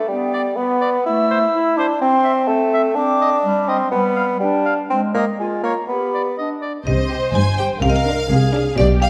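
Quirky and magical, this playful, whimsical film cue moves at 124 BPM in a straight 2/4 in C minor, opening with an up-front, clear bassoon carrying the accompaniment under second lines from a mellow, hollow flute, a vintage-toned clarinet and a smooth-topped oboe, all in a classical style. At 6.9 seconds the woodwinds give way to a woody, sharp xylophone taking the melody, joined by a focused studio violin section, while lush violas, cellos and an up-front double bass section fill out the strings, and from 7.1 seconds an expressive chamber violin section sits in the background. A dark production and a wet scoring-stage reverb surround this short excerpt cut from a longer piece.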